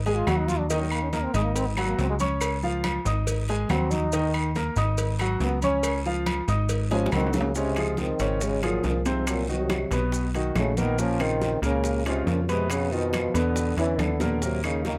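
Close, detailed microphones and light reverb give this sunny, sophisticated Afro-Cuban jazz excerpt an intimate clarity, with a punchy, plucky analog bass and a natural-sounding baby grand piano up front while a dark, whispered trombone plays a roomy, distant solo line over the opening section. Behind them sits a busy percussion bed: thick-skinned congas, tight high-tuned cowbell and bongos, ringing agogo bells and timbales, woody claves, raspy guiro and grainy maracas. A drum fill at 6.9 seconds coincides with a second, mellower trombone entering with a breathy, scooped melody carrying vibrato, and the chords grow richer through the next section.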